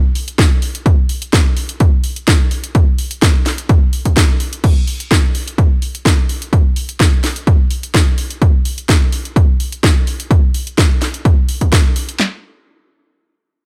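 A lightly swung house groove opens with a drop and runs through this sunny, joyful excerpt. A punchy analog drum machine sits up front with a tape-warm kick, punchy snare and handclaps from 0.4 s. It is layered with an overdriven house kit, entering at 0.2 s, whose cracking snare, bright hi-hats and crash cymbals carry a sidechain pump on the hats and cymbals. Both kits share a small-room ambience until the drums stop around 12.3 s.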